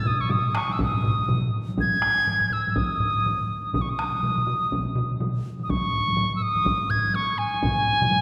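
A wet concert-hall reverb with a 2.2-second decay surrounds this short cut from a longer piece of Japanese traditional taiko drumming, recorded in a church or concert hall. The mood is powerful and driving, moving at 123 BPM in 4/4 with a swung sixteenth-note feel. Up front, a close-miked piccolo carries the melody between G#5 and G#6, its pure, straight tone and crisp attack sounding expressive. Beneath it, a solo taiko part struck with hard sticks comes through compressed and saturated. Three taiko ensembles played with heavy sticks fill out the percussion, one distant in a large room and two in a small room. The piccolo sounds across the full 8.2 seconds. Two of the ensembles and the solo drums enter within the first 0.2 seconds and play until about 8.1 to 8.2 seconds, while the quietest ensemble joins at 0.8 seconds and stops at 7.8.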